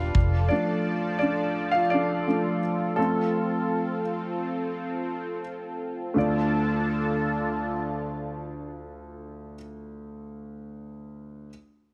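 A light, small-room reverb gives this pop excerpt an intimate, close feel, with every part sitting up front. In D minor at 85 BPM in a straight 4/4, tuned to A4 = 438 Hz, the mood is dramatic and earnest as the harmony moves from Dm/F to F and back to Dm. A warm concert grand piano carries the accompaniment across a range from D2 to F5, its deep bass and natural tone coloured by audible action noise, and it takes a solo through the first 6.2 seconds. Beneath it, an analog pad holds smooth, sustained chords with a detuned sawtooth character, a moving notch, a soft attack, a long release and a chorus effect, ending at 9.5 seconds. A vintage muted fingered electric bass adds a dark, round, amped, foam-muted note at the very start, stopping at 0.5 seconds, before the piano and pad carry the rest of this fragment cut from a longer piece.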